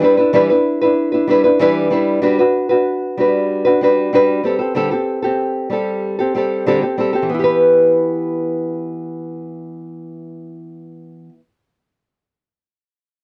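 A reflective, tender pop excerpt at 95 BPM in E minor, where a solo nylon-string guitar, dark, small and fingerpicked up front in a dry, close 1970s-style studio sound, moves from Em7 to Gmaj7 at 2.2 seconds and a rootless D7sus4 at 4.4 seconds before settling on Em at 7.3 seconds.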